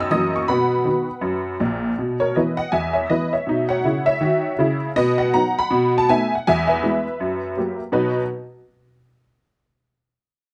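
Swinging eighth notes drive this exuberant stride jazz excerpt at 161 BPM in 4/4, in B major, with a honky-tonk upright piano playing solo from 0.0 to 8.2 s across a range from A#1 to E6. The piano sounds detuned, jangly and vintage, set up front with close, detailed miking and a moderate studio reverb. Its harmony moves from F#7 to B, through E5/B and F#5/B, then B7, E and F#7b9 before settling back on B at 7.9 s.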